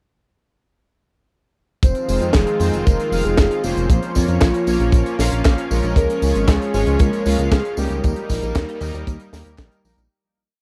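Danceable and melodramatic, this italo disco piece in F minor runs at 116 BPM in a straight 4/4, moving through Fm7, Bbm, Db and Eb before fading out from 7.3 seconds. An up-front four-on-the-floor kick and a dry funk kit of handclaps, hi-hat, high-tuned snare and tambourine drive a glossy, sequenced sixteenth-note synth bass, while a thick, detuned unison pad sustains chords in the background. A round, dark octave-layered synth lead carries a motif-based melody coloured by phaser, tape echo and cassette wear, and fat, brassy analog synth stabs enter at 2.1 seconds with off-beat chords, all in a close, dry 1970s-style studio sound.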